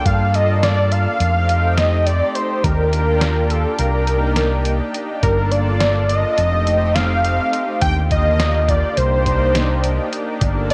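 Brooding and tense, this short excerpt from a longer progressive instrumental moves in a straight 9/8, cycling twice through a Gm7, F7, Ebmaj7, Cm7 progression under a moderate spring reverb. A thick, detuned unison lead carries the melody up front with vibrato, over a silky analog string pad softened by ensemble chorus. A dark, round, punchy fingered electric bass anchors the low end beside a muffled, pitched-down sampler-style drum kit with a thumpy kick.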